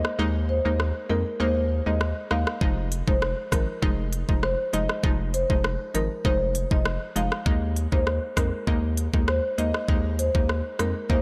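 A hollow, detuned square-wave pluck with chorus, a deep saturated sub bass and a crisp-hatted electronic kit open this bouncy, hypnotic 99 BPM dancehall excerpt on an Ebsus4 break with the kick muted, a warm marimba melody with analog delay entering at 0.5 seconds before the knocking kick lands at 2.6 seconds on Fm7, all set in a light reverb.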